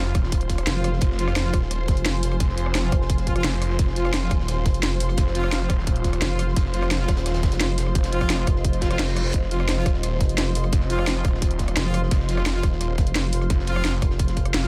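A straight 4/4 pulse at 173 BPM drives this dark, aggressive slice of technical drum and bass in F minor, cut from a longer piece, with a tight, up-front electronic kick and a layered drum and bass kit of hi-hat, rim click and cracking snare running almost its full 14.7 seconds. Underneath, a very quiet breakbeat kit adds gritty, saturated hi-hat and high-tuned snare with a rolled-off top. Two basses dominate the low end: a snarling, detuned sawtooth bass growling between Eb1 and F1 through distortion, overdrive and sidechain pumping, and a nasal vowel-sweep wobble bass holding F1 from 0.7 seconds, its resonant formant filter thickened by chorus and tube saturation. Above them, a clear, close-miked brass section plays soft-attack stabs between F3 and F4, trailed by dub echo. Meanwhile a distant, veiled, con sordino string section and a deep, moody ambient pad with slow attack, chorus and built-in reverb sit in the background, both breathing with sidechain pumping. 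A reverse cymbal appears from 8.8 to 9.3 seconds, and the whole mix stays dry, with the drums and basses pressed forward.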